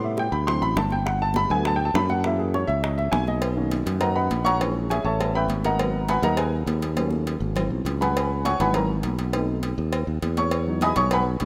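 Afro-Cuban jazz at a brisk 203 BPM, lively and sophisticated, with a woody, slightly detuned upright piano taking the lead in a solo that runs from the start, its action noise audible up close, over rich extended chords that settle into B major at 3.4 s. A bright, growly fingered electric bass sits up front beneath it, while tight, high-tuned bongos and cowbell join at 0.2 s and very quiet, distant congas played with soft hands add a thin-skinned shimmer, with a drum fill at 7.0 s. The rough home-demo mix sits in a moderate, lush hall reverb, and the short clip is cut from a longer piece.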